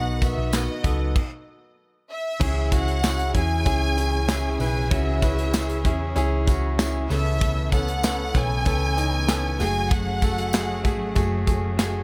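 A polished, reverb-washed studio mix opens this dramatic, bittersweet piano-driven pop excerpt, where a clear concert grand with deep bass carries the accompaniment beneath a lush, focused violin section singing the melody with vibrato. A punchy modern drum kit with handclaps, hi-hat and crash leads the sound alongside a round, dark hollow-body bass placed up front, while a distant, jingly tambourine sits in the background and a very quiet, bright clean electric guitar plays a picked riff. A distant, very quiet string section adds sustained chords with expressive portamento, and after a stop from 1.2 to 2.4 seconds the full arrangement settles into its second section.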